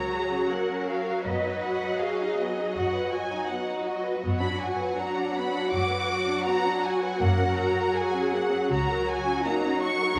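Melancholic and solemn, this slow romantic movement for string orchestra unfolds in a flexible rubato, its bowed sections all singing with vibrato. The first violins carry the melody in a dark, woody tone placed up front, while the second violins trace a focused, smooth-topped second line beneath them. The violas add a rich accompaniment that also sits forward in the blend, and the cellos sit in the background with a soft attack and expressive phrasing. Lush double basses anchor the low end until they stop at 9.3 s, just before the passage closes at 10.2 s. The harmony moves gently from the tonic through a major and then minor chord over F# in the bass before returning home, all bathed in a moderate concert hall reverb.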